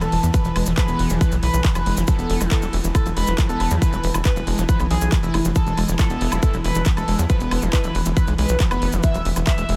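A punchy, tape-warm electronic kick drives this hypnotic psychedelic trance excerpt in E major at 138 BPM, sitting up front beside a tight sequencer bass whose sawtooth and square-wave plucks feel snappy and driving. Above them a gritty, guitar-like overdriven synth lead screams between E4 and E5 with vibrato, phaser and diffuse delay, while a squelchy, resonant acid line riffs in the background and an evolving, detuned wavetable pad holds sustained chords, all three pumping against the kick. An overdriven techno kit of handclaps, hi-hat and woodblock joins a grainy acoustic cabasa, and a very quiet metallic FM wobble bass surfaces briefly from 0.8 to 1.2 seconds and again from 6.0 to 7.9 seconds, the whole dreamy mix soaked in a huge ambient reverb.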